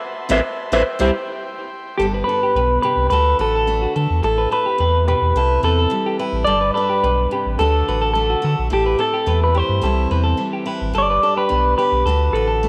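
Set in light reverb, this sunny, danceable highlife excerpt moves at 107 BPM in G major, opening with a band accent while a buzzy vintage combo organ holds sustained chords until 2.0 seconds. From 0.3 seconds, a twangy, slightly broken-up electric guitar through a small old amp carries the melody up front with spring reverb, while a bright picked steel-string acoustic guitar provides accompaniment and a clean semi-hollow electric guitar plays arpeggios through tape echo. Underneath, a deep, smooth pure sine sub bass sits up front as the chords cycle through Amadd9, C, Gadd9 and D.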